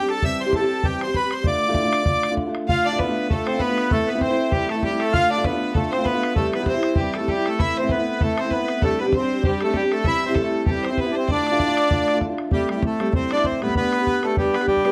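Dark, lively and wild, this Celtic folk reel drives along at 195 BPM in 4/4 with a swung eighth-note feel, set in D dorian and cut from a longer piece. A reedy, full accordion carries the melody up front, close-miked and touched with plate reverb, while a fingerpicked old ladder-braced acoustic guitar supplies the accompaniment with a woody, boxy tone and the dark sound of old strings. A damped, tight bodhran joins at 0.1 seconds, sitting close in the mix. At 2.7 seconds a single bowed fiddle enters with a second line, smooth and even with light vibrato, and it drops out at 12.2 seconds, shortly before the tune moves into a new section at 12.5 seconds. The harmony circles through C, Dm and Am before turning to Am7 and G near the end, all within a moderate studio room.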